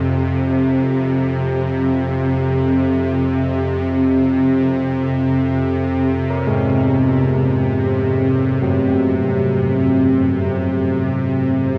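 Ominous and dark, this dark ambient drone unfolds in free time, tuned to A4 = 444 Hz, and is cut from a longer piece. An up-front, string-like bowed drone with a tense, sawtooth edge, a noise layer, ring modulation and vibrato sustains from F2 to C3 over a Gb/F harmony, with slow attacks and long releases. At 6.3 seconds, quieter carillon bells enter with bronze, ringing arpeggios from Gb3 to Bb4 and a diffuse ambient delay, all set in a cathedral reverb with a 5.3-second decay.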